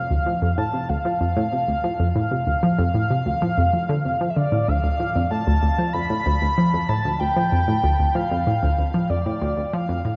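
Bathed in a huge, wet ambient reverb with a long tail and a softened top end, this short excerpt from a longer piece of sequencer-driven space music feels cosmic and hypnotic over a steady, straight pulse on a single minor chord. Up front, a round, detuned analog pluck carries the low riff with a snappy attack, a filter sweep and chorus and tape echo. Above it, a breathy, flute-like synth lead sings a sustained melody with vibrato, analog chorus and tape echo throughout, while the recording fades out from 8.0 to 10.2 seconds.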